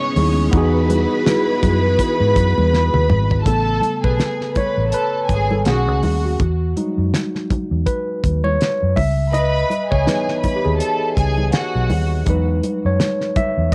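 A barky tine electric piano takes a solo from 3.5 seconds over a round, foam-muted fingered bass, a dry 70s drum kit with a fat snare, very quiet congas and veiled con sordino strings with analog delay, while a lush sawtooth string machine holds chords only until 3.4 seconds in this smooth, swung 1970s-style soul cut with cassette tape colour.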